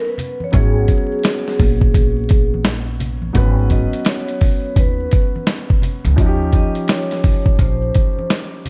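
A dark, warm production with small room ambience and vinyl crackle frames this mellow, nocturnal jazz-hop excerpt. Up front, a gritty, compressed boom bap sampler-style kit drives a swung 4/4 groove with a thumpy kick, medium-tuned snare and hi-hat, its sound re-recorded in a large room. An upright bass, woody and growly with pizzicato steel strings, enters at 0.5 seconds and stops at 7.9, while a vintage baby grand piano with long sustain supplies smooth accompaniment. A vibraphone played with medium mallets carries the melody, its metallic, ringing tone colored by slow motor vibrato, and it takes a solo from 3.4 seconds. Maracas and congas, played with hard hands and miked close, sit in the background.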